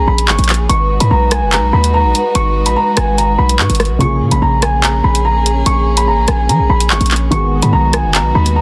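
Dense, heavily limited and flecked with lossy compression artefacts in a small room, this cold, ominous half-time drill excerpt sets a woody upright piano melody over smooth, soft-attack bowed chamber strings with light vibrato, a punchy, heavy 808-style bass with a sine body and noise layer sitting up front, and an electronic drill kit of bright hats, handclaps and rim clicks from 0.2 s, while a mellow baby grand with audible action noise joins in accompaniment at 4.0 s.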